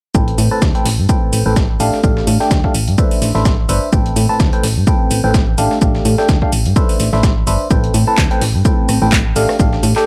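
A dry, close sound carries this soulful, energetic piano house passage, cut from a longer piece, where a biting, barking FM electric piano riff with phaser, cassette-tape color, tape echo and a low-pass filter pumps up front over a round, mellow, sidechained FM bass, an overdriven punchy electronic kick, a house kit of handclaps, metallic hats and rim clicks, and a gritty, compressed breakbeat sampler-style kit of hi-hat, shaker and snare, as the harmony cycles through Am9, F69/A and Cmaj9/A.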